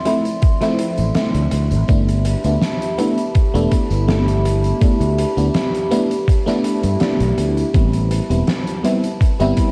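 A straight 4/4 pulse at 82 BPM drives this faded, nostalgic vaporwave fragment in G mixolydian, where a thumpy, overdriven electronic kick sits up front beside a growly fingered electric bass entering at 1.0 seconds, an oversized low-tuned kit adds a fat, gritty snare, hi-hat and tambourine in gated reverb, a lush FM electric piano with a soft pad layer drifts through phaser, chorus, tape and delay, and a warbling, lo-fi pad holds long chords from Dm9 to G69 and Am9 in a small room with cassette character.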